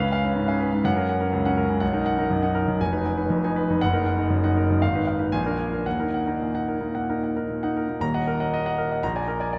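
A clear concert grand piano carries this passionate, agitated classical fragment alone, its deep bass and natural, up-front tone filling a vast, echoing space. Written as a virtuoso study in Eb minor, it moves in 4/4 with a rubato feel, the pulse drifting between 109 and 125 BPM. The playing spans the instrument from Eb1 up to Bb5. The harmony travels from Db7 through Gb, Bmaj7 and Fm7b5 before settling on Ebm at 5.9 seconds, and a Bb7 at 9.0 seconds leaves the closing passage hanging. A long cathedral reverb lets each chord bloom and linger, and the piece breaks off after a brief contrasting passage from 8.0 seconds.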